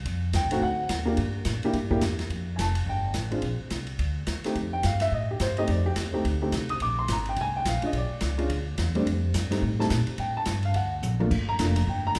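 Small-group jazz in a swing and bop vein, this short excerpt from a longer piece has a relaxed, swinging mood at a brisk 4/4 pace. The upright bass opens the music at the very start with pizzicato lines of steel-stringed, woody tone, joined almost at once by an open jazz drum kit whose airy, polished sound features dark cymbals, a medium-tuned snare and a boomy kick. At 0.4 seconds a dark upright piano comes in as accompaniment, mellow, smooth and vintage in character and sitting up front in the mix, voicing chords such as F9, Bb9 and Gm7. The drums carry crash, hi-hat, ride and toms, and they play a fill at 11.0 seconds near the close of the passage. The trio is heard in a reverberant recital hall, lending the whole performance a spacious, resonant ambience.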